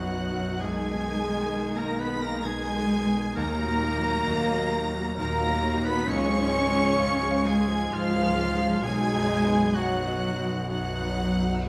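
A lush, vibrato-rich violin section carries the high melody of this bittersweet, sorrowful cinematic orchestral excerpt at a rubato 66 BPM in 3/4, shadowed by a second, intense violin line, an airy flute group and a distant solo oboe, while a polished grand piano with audible action noise, expressive violas, mellow French horn chords, a very quiet ringing harp, smooth double basses and cellos fill the lower parts over chords moving from B through Abm/Cb, Ebm and Db, all set in a wet scoring-stage reverb.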